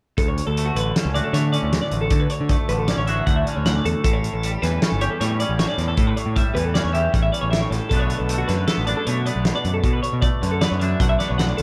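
A loose indie drum kit sits up front, its fat snare and punchy kick carrying a saturated, gritty grit with a rolled-off top, driving this math rock and midwest emo excerpt at 155 BPM in a straight 5/4. A growling picked electric bass, overdriven and also up front, anchors the low end, while a twangy electric guitar plays accompaniment through a lush chorus. Above them, a twelve-string electric guitar spins clean, compressed arpeggios bathed in spring reverb, adding a chiming sparkle. All four parts play together from 0.2 to 11.6 seconds over a harmony in D major that moves from Dmaj7 to A7 at 4.0 seconds and Bm7 at 7.9 seconds. The mood is intricate and bright, set within a dark production that keeps the room fairly dry.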